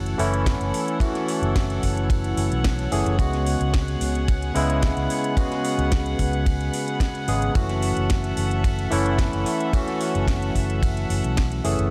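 Recorded in a small room with light reverb, this sensual, groovy nu-disco excerpt at 110 BPM in F# minor puts a barky tine electric piano up front, clean through a combo amp with delay and sidechain pumping, over dark, floating bowed strings that also pump, while a punchy, amped fingered bass with an envelope filter, a dry, tight kick entering at 0.5 seconds, and a layered electronic house kit with cracking snare and metallic hats drive the groove through F#m7 and C#7sus4.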